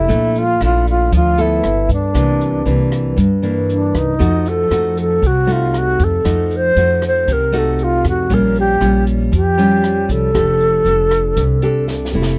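This romantic, breezy bossa nova excerpt features a mellow alto flute carrying the melody over fingerpicked nylon-string guitar and pizzicato upright bass, with an open jazz drum kit joining at 0.1 seconds. The tempo sits at 117 BPM in a straight 4/4 feel in F major. The airy flute sits up front with vibrato, a soft attack and rolled-off highs, playing expressively in a range from D4 to C5. The classical-style guitar, also forward in the mix with the warm sound of fresh strings, moves through lush harmony from Bbmaj7#11 and C9 to F7b9, Bbm6 and a closing F69, while the woody upright bass anchors the low end. The drums stay quieter, blending hi-hat, rim click, a medium-tuned snare and a boomy kick with the natural sound of a small room, and they take a short fill at 11.9 seconds as the flute stops. The recording is dry and close, with little reverb, in a 1970s studio style.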